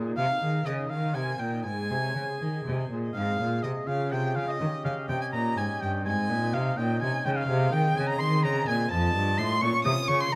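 A rich, bowed cello anchors this dance-like, radiant baroque-style sonata movement in Ab major at 83 BPM in 6/8, with a pipe organ's nasal cornet stop and tremulant filling out the continuo, while a warm oboe with light vibrato sings the melody alongside a dark, woody violin second line, heard in a moderate recital-hall reverb in a passage cut from a longer piece.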